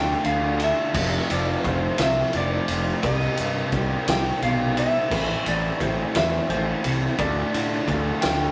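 A rough rehearsal-room sound fills this dark, cathartic excerpt of quiet-loud alternative rock, with a moderate stone-room reverb lingering around the band. In A minor and a slow 6/8 at 58 beats per minute, counted in dotted quarters, the harmony moves from Dm through F and Cm to Am before returning to Dm at 7.2 seconds. A clean, picked electric guitar carries the melody in a shadowy upper register, while a compressed, double-tracked fuzz guitar riff sits in the background and a second, brighter fuzz guitar plays a riff very quietly. The overdriven fuzz bass sits up front with a warm, fuzzy tone. From 0.2 seconds a loose indie drum kit joins just as forward in the mix, its fat snare and punchy kick sounding gritty and saturated, with a rolled-off top softening the crash and ride cymbals.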